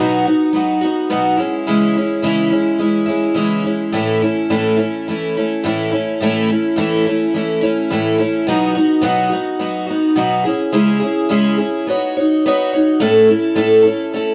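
Rock with a nostalgic, open-road feel, this short piece is cut from a longer work and carried by a lone picked twelve-string acoustic guitar, its octave-doubled strings sounding bright and shimmering with a boxy body and some finger squeak. The guitar sits up front in a wet stone room, moving through a B, C#m and A progression and touching a Badd9 before settling on A at 13.0 seconds as the piece turns toward a new section.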